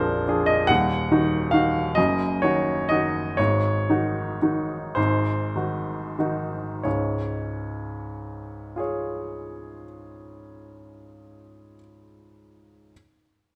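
Hopeful and passionate, this romantic classical character piece for solo piano moves in a rubato 6/8 at 30-48 BPM in Db major, its clear, polished baby grand sitting up front in a moderate recital hall reverb and ranging from Bb0 to Gb5, slowing through the opening 6.8 seconds as the harmony passes from Bb7 through Ebm and Ab7sus4 before arriving on Db for a new section that runs to 10.7 seconds, all within a fragment cut from a longer work.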